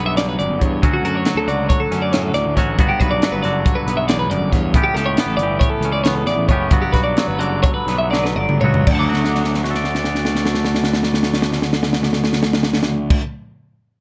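Math rock and midwest emo in 9/8 and D major, this wistful, intricate excerpt runs at 235-276 BPM in eighths. A bright twelve-string electric guitar plays arpeggios over a clean, twangy electric guitar accompaniment and a growly fuzz bass driven by overdrive, while a crisp fusion drum kit with a high-tuned snare and punchy kick sits up front in an airy studio room. The chords move through Gmaj7, Dmaj7 and A9 as the tempo slows from 5.2 s into a drum fill, and a new section lands on D at 8.9 s with another long fill, all in a dry mix with little reverb.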